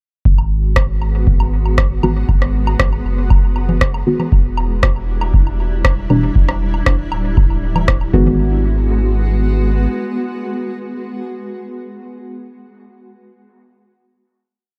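A dry, deep electronic kick and a round sine sub bass open this hazy dub techno piece at 118 BPM, the kick holding a straight four-on-the-floor pulse while the bass sustains long gliding notes that pump with sidechain. Overdriven woodblock and low congas, along with a layered electronic rim click carrying the programmed hats and backbeat, spread dub echoes through the groove, and a granular cloud pad drifts in with blurred, evolving sustained chords inside its own reverb. From 2.0 s, sparse, nasal chord stabs, one shape moved in parallel, arrive with chorus, phaser and echo, and a filter sweep runs across them while the harmony moves from G#m7 to Em7 and back. The drums and percussion drop out by 8.4 s, the bass trails off soon after, and the pad and stabs ring on as a final hit. The mix sits up front and dry, with little room sound.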